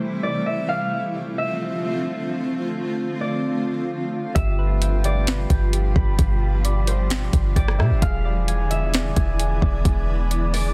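A dense, heavily limited modern master with little reverb of its own frames this hazy, spacious excerpt of atmospheric cloud-rap, moving at 131 BPM in 4/4 with a half-time feel. From 0.0 seconds, a ringing, thumb-plucked concert harp carries the melody through a low-pass filter and delay, floating over a cloudy, evolving granular pad whose blurred, full-bodied chords breathe with sidechain pumping and sit in their own built-in reverb. At 4.4 seconds, the low end arrives with a deep, boomy, clean 808-style bass placed up front, alongside a smooth R&B drum kit of soft kick, sharp snare, rim click and hats, overdriven and re-recorded in a small room. Soft, round electric-piano-like synth keys enter at the same moment with mellow arpeggios, colored by chorus, a filter sweep and delay. From 5.6 seconds, an airy, breathy wind-like texture drifts in the background. Across the excerpt, the harmony moves from Am7 and Dm7 to G7 and then E7.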